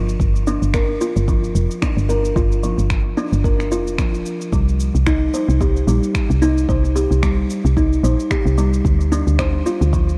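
A mellow, hollow-sounding kalimba plucks arpeggios through a low-pass filter sweep and delay over a woody, round, dark FM bass, a deep electronic kick and faint electronic cabasa and finger snaps, giving this hypnotic, earthy organic downtempo excerpt a swung sixteenth-note feel and a dry sound coloured by worn, warbling cassette tape with pitch drift.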